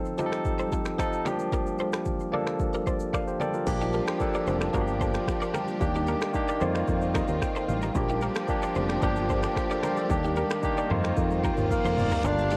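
Lightly reverberant with a homespun cassette haze, this hypnotic, smooth afrobeats cut in G minor at 112 BPM opens on a barky, up-front tine electric piano, an overdriven electronic drum kit with a deep kick and metallic hats, a twangy, slightly broken-up guitar riff echoing through analog delay in the background, and very quiet, distant congas; a lush bowed string section and a growly fingered bass join at 3.7 seconds, and a reverse cymbal sweeps in at 11.5 seconds just before a breathy, raspy tenor saxophone steps forward at 11.7 seconds.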